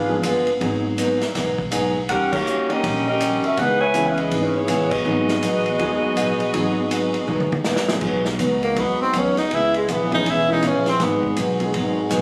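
Brassy and dramatic, this snippet of minor-key big band swing opens with a dark, vibrato-laden saxophone section carrying the melody over picked steel-string acoustic guitar with audible finger squeak, a woody, growly pizzicato upright bass, a warm baby grand piano in the background, and a vintage drum kit with dark cymbals and a tight kick, punctuated by band accents at 2.3 and 4.9 seconds. After a drum fill, a bright trombone section enters with sustained chords at 8.0 seconds and a soft-attack tenor saxophone steps up front for a vibrato-tinged solo. The sound has the roomy, compressed feel of a phone recording in a club.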